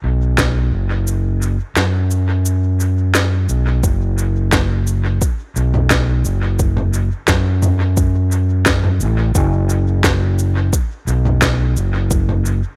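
Deep and meditative, this ambient dub fragment rests on a punchy, amped, overdriven fingered electric bass up front, joined at 0.4 seconds by a layered electronic kick with a deep thump, which drops out from 1.1 to 3.8 seconds, and by an organic electronic kit of cabasa, woody snare and toms, re-recorded in a small room and fed through dub echo, both drum parts carrying a tape-warm tone in a dry mix.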